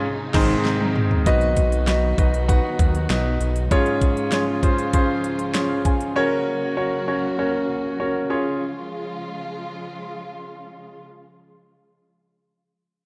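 This hopeful, uplifting piano-driven pop excerpt in Db major at 98 BPM opens on a band accent: a clear, polished concert grand with deep bass and lush, distant bowed strings are joined almost at once by a thick, detuned sawtooth bass with a filter pluck, a very quiet picked acoustic guitar riff, and an up-front electronic kit with a knocking kick, fat snare and crisp hats. After a drum fill, the strings hold sustained chords with vibrato and portamento over harmony moving from Ab through Cb, Db and Gb, a grand piano fill arrives at 5.2 seconds, the drums stop at 6.1 seconds and the piano stops at 8.6 seconds, leaving the strings to ring on. A moderate plate reverb soaks the mix in a dreamy haze.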